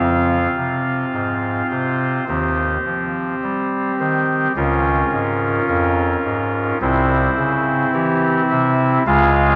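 Grave and dark, this short classical excerpt is a chorale-style passage for a solo chamber organ, cut from a longer piece. The single part is a soft reed voice drawn from an oboe stop, with a reedy chamber voicing, a chiff at the start of each note, and a close, up-front placement. It spans from C2 up to F5, and the rubato feel in 4/4 gives the harmony room to breathe as it moves from Fm through Cm/Eb and Bbm/Db before settling on a C chord at 6.8 seconds. A wet cathedral reverb with a 4.4-second decay hangs around the organ. Worn, warbling cassette tape adds a wavering pitch drift that leaves the whole fragment sounding aged and uneasy until it breaks off at 9.6 seconds.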